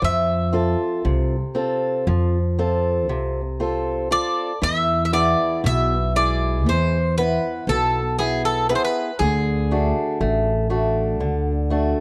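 Greek folk with a melancholic, reflective mood, this short excerpt moves at 118 BPM in 9/8 in E phrygian dominant: a bright, metallic, double-strung bouzouki carries the melody up front until 10.7 seconds over a dark, boxy fingerpicked ladder-braced acoustic guitar and a woody pizzicato upright bass, all captured close and dry in detailed sound as the chords pass from F to E at 4.6 seconds and on to D at 9.2 seconds.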